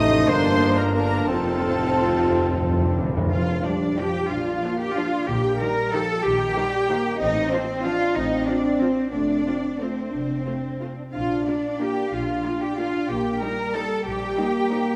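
A full orchestra opens this elegant, festive classical excerpt in a rubato three-four, with a lush violin section carrying the melody over a second violin line, a woody viola section, a mellow French horn section holding chords, an up-front cello section and a smooth double bass section, while a distant silver flute, a very quiet clarinet, a bassoon, bright trumpet stabs and a roomy tuba colour only the first 3 seconds and round soft-mallet timpani enter at 1.3 seconds with a fill, the whole set in the reverberant space of a concert hall.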